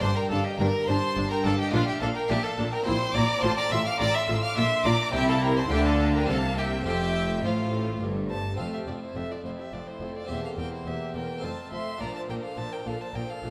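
Lively and brilliant, this baroque-style concerto movement in F major moves at 105 BPM in a straight 3/4, cut from a longer piece. A solo violin, focused and up front with vibrato, carries the melody alongside a close, expressive chamber violin section, while a more distant violin section with a warm tone supplies a second line. A French-style harpsichord with three sets of strings gives full, plucked accompaniment, joined in the background by a close, focused viola section. The bass is shared by a smooth, even cello section sitting further back and a lush double bass section with a soft attack, all seven parts playing together across the 13.5 seconds. The harmony starts on G minor and works through B-flat and C7 toward an F chord at 6.9 seconds, with a second section from 8.6 seconds closing on B-flat at 12.0 seconds, all set in a recital hall reverb with a 1.6-second decay.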